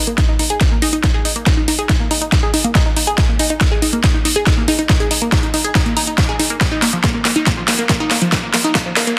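A lush, detuned sawtooth pluck stacked in unison leads this uplifting trance build-up, playing arpeggios from F3 to Ab4 with a fast attack, short decay, a noise layer and a sine layer. A filter sweep and moving notch shape its tone, while sidechain pumping and digital delay add motion and echo to the pattern. Under it, an overdriven, layered big-room drum kit plays a fill across the whole passage, with a huge snare and metallic hats up front, the hats also pumping with the sidechain. A punchy analog electronic kick, re-recorded in a large room, enters at 0.2 seconds and drops out at 8.8 seconds. The mood is euphoric yet bittersweet, and the dense, heavily limited master with light reverb keeps the energy pressed hard and forward.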